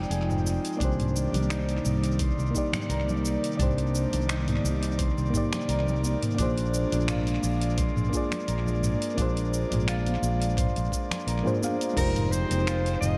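Sunset chillout at 86 BPM with a light 16th-note swing, this short excerpt feels smooth and wistful, drifting over Fm9, Cm9 and Bb9 chords. A soft, round FM electric piano carries the accompaniment with a warbling, vintage cassette character, chorus and tape echo. Beneath it sits a breathy, detuned pad with a slow attack and long release, while a fingerpicked concert harp rings out arpeggios through a low-pass filter and tape echo. The growly fretless electric bass sits up front, joined by a produced R&B kit of hi-hat, finger snaps, cabasa, toms and crash cymbal, a knocking electronic kick from 0.8 seconds, and very quiet, close congas played with soft hands. At 12.0 seconds a mellow, distant soprano saxophone enters with vibrato and scooped notes in a jazz style, its tape echo trailing into a light, echo-heavy digital ambience.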